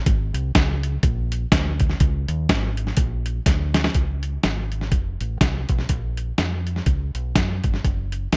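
Reverent and uplifting, this short uptempo gospel excerpt rides a lightly swung 4/4 groove cut from a longer piece. A deep dub fingered electric bass carries the low end throughout, its tone dark, round and punchy, sitting up front with a direct, amped presence. Alongside it, a lo-fi sampler-style drum kit of hi-hat, kick and snare sounds compressed, pitched down and muffled, with a thumpy kick, a medium-tuned snare and gated reverb. A drum fill at 3.5 seconds leads into a new section at 4.0 seconds, and both parts play on to the close at 8.4 seconds. The overall sound is bright in a 1980s digital manner, dry in its room, with both instruments pressed close to the listener.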